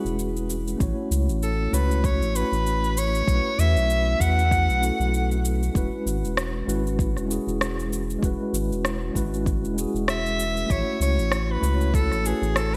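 Sunset chillout in E major at 97 BPM with a smooth, relaxed 16th-note swing, where a mellow tine electric piano with digital delay lays down E69, A6 and B9sus4 chords over a round, dark analog bass with a filter sweep, a deep electronic kick and a layered electronic cabasa and rim click, while a breathy, bright soprano saxophone with light vibrato and delay takes the melody from 1.4 to 5.4 seconds and again from 10.1 seconds, all within a lush hall ambience and bright 1980s-style digital production in this short cut from a longer piece.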